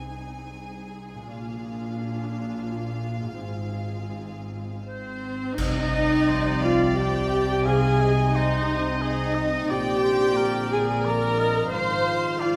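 Longing and moving, this cinematic film score fragment for orchestra unfolds in C minor at 88 BPM in a rubato 3/4, tuned slightly low at A4 = 436 Hz. From the start, a dark, intimate viola section sits up front with sul tasto bowing over shadowy cellos and a soft, floating double bass section, while a clear violin section carries a second line above and a very quiet concert harp rings out arpeggios. A silver concert flute with crisp attack and expressive vibrato joins from a distance at 4.9 seconds. At 5.6 seconds the music opens into its second section: a warm violin section takes the melody in the background, a distant, roomy French horn section holds sustained chords, and bright clash cymbals with concert bass drum mark a brief, dry accent. An oboe with light vibrato adds another classical-style line from 6.3 seconds, as the harmony cycles through Ab/C, Bb7 and Fm/Ab, with Cmadd9 opening the second section, all set in a moderate concert hall reverb.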